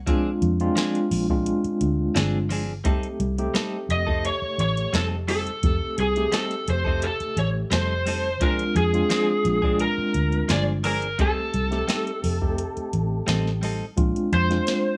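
Swaggering and rollicking, this straight-eighth soul blues struts along at 86 BPM in 4/4, a short cut from a longer piece that moves between Bb9 and F9 chords. A dark, round, foam-muted fingered electric bass sits up front from the very start, joined almost at once by a soft vintage rhythm box with a deep kick, crisp snare and metallic hats, dry and tape-tinged. A tine electric piano fills in the accompaniment through a combo amp with a medium tremolo, while a direct-recorded clean electric guitar adds compressed, picked stabs bathed in lush chorus. At 3.9 seconds the lead guitar enters through a small cranked amp, its overdriven, picked melody riding up front with slapback echo and plate reverb. A light reverb gives the whole band a modest sense of space.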